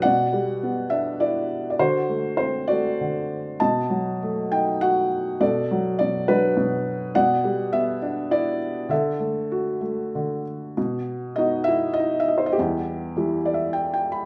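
A felt-muted upright piano plays alone from the first second in this brooding, moody classical excerpt, its intimate, thin-felt tone placed up front in a moderate recital-hall reverb as it moves in a rubato 3/4 at about 93-105 BPM, tuned to A4 = 442 Hz and spanning E2 to B5, through chords such as G6/B, D7 and Bm7 before shifting to a new section at 10.8 s and closing with a short piano fill at 13.2 s.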